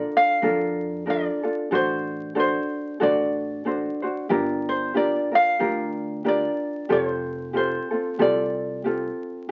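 The sound is that of a very old 78 rpm record, with vinyl crackle over a moderate studio reverb that gives the room a modest glow. This languid, relaxed Hawaiian piece, cut from a longer work, moves at an easy 93 BPM in 4/4 with a gentle swing on the eighth notes. Two acoustic ukuleles sit up front: one fingerpicks a light accompaniment from the very start, while the other, thumb-plucked and mellow, carries the melody in a higher register from 0.2 seconds. An upright bass enters at 0.4 seconds, its pizzicato steel strings sounding woody, growly and thumpy, though it sits far lower in the mix than the ukuleles. The harmony drifts from Bbmaj7 through D7/A and Gm7 before settling on Fadd9, lending the whole passage a warm, unhurried lilt.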